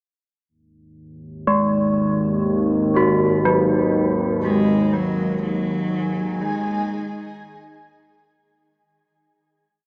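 A vast, ominous dark ambient drone piece, where a warbling, detuned analog drone with chorus enters at 1.4 seconds beneath ringing bronze metallophone arpeggios in two slow loops drifting against each other through diffuse delay, a woody, bowed cello sings a free melody with vibrato from 4.4 seconds, and a cloudy granular pad adds slowly shifting chords from 5.4 seconds, all steeped in huge reverb with a small-speaker sound and fading out from 4.4 seconds.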